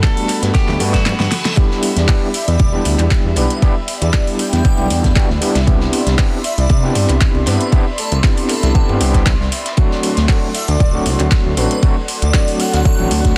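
This late-night, moody deep house excerpt opens with a twangy, slightly broken-up electric guitar line that lasts only to 1.5 seconds, set against a breathy, detuned pad, barky overdriven electric piano stabs with tremolo and tape echo, a layered electronic drum kit with fat snare and metallic hats, a deep, up-front kick, and a high-tuned acoustic funk kit in the background. A smooth, wave-folded synth bass glides in at 0.4 seconds, and a drum fill and very quiet reverse cymbal play across a brief kick drop before the chords settle through Em7, Cmaj9 and D7 under a swung, sidechain-pumped groove. From 2.3 seconds a dreamy, detuned lead with chorus, vibrato and delay floats over the small-room sound of a dense, heavily limited modern mix.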